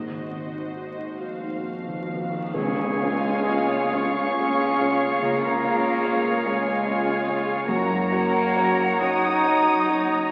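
Veiled, con sordino violins carry a tender melody over a second violin line, lush violas, very quiet cellos, double basses and a soft, felt-muted upright piano with audible action noise, opening on an Ab7 chord in a slow, rubato 6/8 Db major film-score passage. Mellow French horns enter up front with sustained chords at 1.2 s. At 2.5 s, as the harmony arrives on Db, an accent brings in a clear oboe, a mellow clarinet and an airy silver flute, with a dark tam-tam and barely audible timpani, before the music moves to Gb at 7.7 s in an uplifting, emotional glow, all heard through wet stage reverb and the crackle of a very old 78 rpm record.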